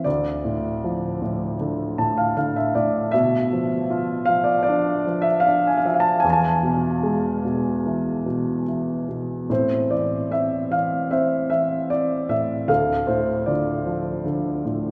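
Bathed in a cathedral-like reverb with a long 5.8-second tail, this melancholic, dark classical excerpt features a solo grand piano, intimate and up front with audible action noise and long sustain, playing a lyrical rubato line in A harmonic minor at 76 BPM in 4/4, adding a brief fill at 1.6 seconds and moving through Dm, Bdim and E before a restatement at 9.5 seconds settles on Am and returns to Dm.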